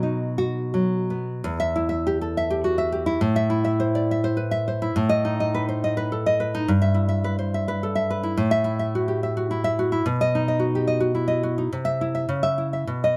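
In a lilting three-beat metre, the pulse stretches and bends freely with rubato, so the beats fall unevenly and the phrasing breathes like speech. This is an intimate, wistful romantic piece for a solo fingerpicked nylon-string guitar, heard as a fragment cut from a longer work. The instrument sounds dark and woody, with the full-bodied tone of old strings, and it sits up front in a light reverb. After a brief opening on a B chord, the main passage begins at 1.5 s on E minor and moves through A minor, an inverted B7 and E minor over G. Later it settles back on B at 10.0 s before turning to C and then C-sharp minor near the close. The playing spans the guitar's range from its deep low E up into its upper register, giving the fragment a rich, classical depth.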